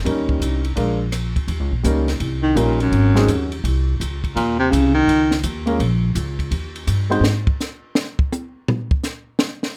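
A lightly reverberant, intimate recording opens this sophisticated small-group swing and bop cut, taken from a longer piece, moving at 167 BPM in 4/4 with swung eighths in Eb mixolydian over chords such as Eb7, Bb7 and Ab7. A baby grand piano with audible action noise comps in short spells, a woody, dark pizzicato upright bass anchors the low end, and a compact cocktail kit sits up front, dry, with dark cymbals, a high-tuned snare and a punchy kick. A warm baritone saxophone with vibrato takes a brief solo from 2.4 to 5.4 seconds, and after the bass drops out at 7.4 seconds the drums carry on alone in a solo to the cut.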